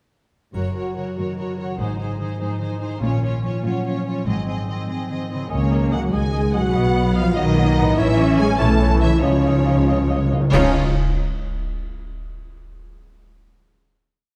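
Heroic adventure film score in a soaring 6/8 at 96 BPM, where lush vibrato violins carry the tune over a distant viola counter-melody, woody cellos, up-front pizzicato double basses, ringing harp broken chords and hard-mallet timpani, building from 0.6 s until mellow French horns, clear trombones, an airy flute and cor anglais join at 5.5 s on a Db mixolydian theme that slows before a bright cymbal and bass drum accent at 10.5 s and a final chord, all in a dark, warm scoring-stage sound.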